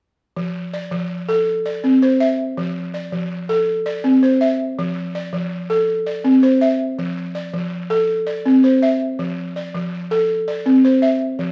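West African traditional music in a straight 12/8, this joyful, hypnotic fragment cut from a longer piece features a balafon, woody and buzzing under soft rubber mallets and placed up front, spinning arpeggios over a steady alternation of F and C chords from 0.4 to 11.5 seconds within a wet, large studio reverb.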